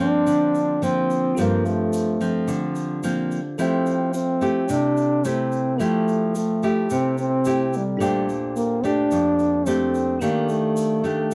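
Bossa nova in F major at 109 BPM in a straight 4/4, this short excerpt cut from a longer piece carries a romantic, sunny mood across its 11.3 seconds. A mellow trombone sits up front with the melody, a jazz-style solo voice with light vibrato, scooped notes and a smooth top. Beside it, a fingerpicked nylon-string guitar plays accompaniment in a classical manner, its fresh strings warm and close, with audible finger squeak. Further back, a bell-like tine electric piano adds clean, direct accompaniment, while a grainy egg shaker ticks quietly from a distant, large room. The harmony moves from Gm11 to Fmaj9 at 3.6 seconds, then Bbmaj13 and Ebmaj9#11, all set in a dark production with light reverb.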